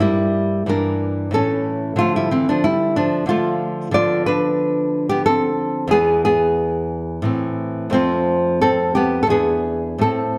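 In a flexible, rubato triple metre, this grave yet flowing fragment of a classical, baroque-style dance features a solo nylon-string guitar, fingerpicked and up front with a warm acoustic tone, set in a moderate scoring-stage reverb as its harmony moves from Em7b5/G through Dm and Am to a closing E7 at 9.3 seconds.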